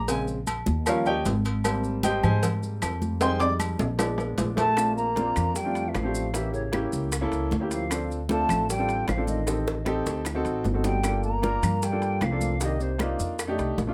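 Afro-Cuban jazz with a sunny, danceable lift, this short excerpt from a longer piece moves at a brisk straight 4/4. A clear, open baby grand piano sits up front with long sustain, and over the first 4.8 seconds it is the featured voice, moving through rich extended chords while a woody, pizzicato upright bass on steel strings anchors the low end and a drum fill leads into the next section. Around it the percussion builds a busy bed: ringing agogo bells and metal-shelled timbales close by, bright high-tuned congas with a thin skin, tight cowbell and bongos, grainy maracas and dry, woody claves, most of them tucked into the background. At 4.6 seconds a pure, hollow silver concert flute takes the melody with vibrato and a crisp attack, set distant in plate reverb, while a mellow trombone carries a second line below with light vibrato, scooped notes and a smooth top. A second drum fill arrives near 9.5 seconds, and the whole band sits in a moderate club ambience.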